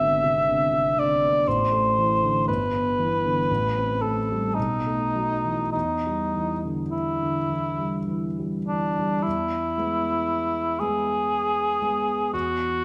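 In a slow, rubato 3/4 at 48-61 BPM, this melancholic, solemn romantic classical duo sets a mellow cor anglais melody, sung with light vibrato between D4 and E5, over warm grand piano accompaniment whose long sustain and audible action noise give it an intimate, natural presence. Both instruments sit up front in a wet recital hall reverb as the harmony moves through E minor and then brightens to E major at 9.3 s, arriving on an F#7 chord over E at 12.3 s in this passage cut from a longer piece.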